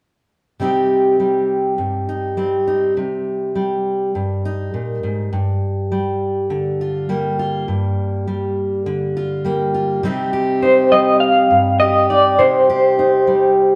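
A straight 4/4 pulse at 102 BPM carries this yearning, wistful folk piece in C minor, cut from a longer performance, as a full-bodied fingerpicked steel-string acoustic guitar sits up front from 0.6 seconds, moving from Cm to Gm7 and back to Cm. At 10.6 seconds an electric guitar through a small old amp takes the melody, its dark, slightly broken-up, lo-fi tone pulsing with tremolo and sitting louder than the acoustic. The two play live together in a stone room whose wet reverb hangs around them.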